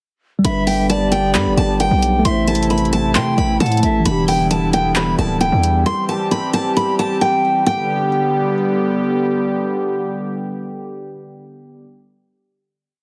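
Opening at 0.4 seconds with a bright, looping picked acoustic guitar melody over a half-time trap beat of handclaps and fast hi-hat rolls, aggressive distorted 808 bass with pitch slides, mellow held electric piano chords, a breathy, reedy pan flute counter-melody with delay and a smooth, detuned vintage analog pad with chorus, this triumphant, dreamy G-major hip hop hook at 133 BPM thins out until the guitar stops at 9.0 seconds and the pad sustains the final G chord alone to 11.8 seconds, heard through a heavily compressed radio sound with light reverb.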